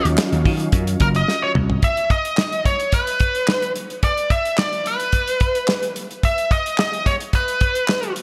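A dark, nasal lead guitar with a parked wah, overdrive and delay carries the melody up front in this slick, funky slice of early-eighties boogie funk at 109 BPM, tuned to A4 = 444 Hz. It solos over a D#m9 chord with growly slap bass, a barky, gritty tine electric piano with fast tremolo and a brassy, detuned analog pad with chorus in the background, until a drum fill leads to 1.8 seconds, where those three parts stop. From there the guitar rides over a dry, damped kit with a tight kick, handclaps, toms and gated reverb, all in a bright 1980s-style digital production with a small room ambience.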